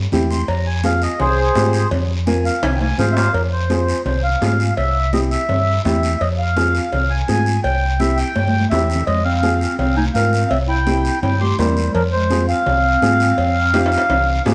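Cumbia at a fiery, danceable 167 BPM in F harmonic minor, this excerpt opens with a reedy, gently beating accordion solo up front, carried by a round, dark fingered electric bass and a woody, slightly detuned upright piano with audible action noise. Ringing high-tuned congas and vintage metal-shell cowbell and timbales sit in the background, a raspy guiro adds its texture, and drum fills mark the turns. At 8.7 s a gritty, growling jazz-style clarinet with vibrato enters as a second line, all in a large studio room with moderate reverb.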